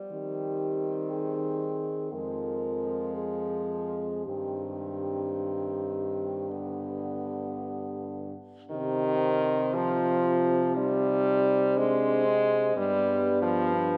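A clear, vintage-toned French horn sits up front with the accompaniment in this melancholic, solemn classical piece for horn quartet, a fragment from a longer work that unfolds in a rubato 4/4. A dark horn carries the melody while a warm horn traces a second line in the background, and a bass horn with light vibrato and a soft attack anchors the low end, also placed up front. The four horns sound together through to 14.0 seconds inside a long church reverb, with the harmony coming to rest on a closing G7.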